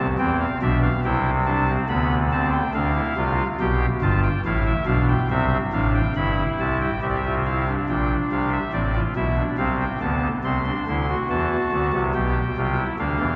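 A soft reed pipe organ plays alone from the first moment in this contemplative, serious fragment of a baroque-style three-part fugue at 70 BPM in 4/4, tuned to A4 = 437 Hz, its oboe solo stop voiced in baroque fashion with chiff and a trembling tremulant sitting up front across a span from G1 to C6, while the harmony moves from C through G7 and C7 toward G/B by 12.2 seconds, all heard from farther back in a cathedral whose 5.0-second reverb blooms long and whose treble is rolled off above 7.9 kHz.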